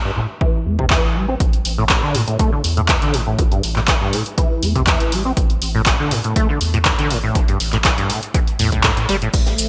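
A squelchy, resonant sawtooth acid bass riff leads this raw, trippy acid house excerpt in A minor at 121 BPM, its filter sweeping throughout and its tone thickened by tube saturation, chorus and delay above a deep, round analog bass that pumps with sidechain compression. A punchy electronic kick enters at 0.4 seconds and a tape-toned analog drum machine at 0.9 seconds, bringing crash cymbal, handclaps and hi-hat through gated reverb in a bright 1980s-style digital production with a small-room ambience. Only in the closing moments, from 9.3 seconds, do a dark, rolled-off tambourine and high-tuned snare and a grainy, close cabasa surface in the background, joined at 9.4 seconds by a warbling, nostalgic lo-fi pad of detuned sustained chords.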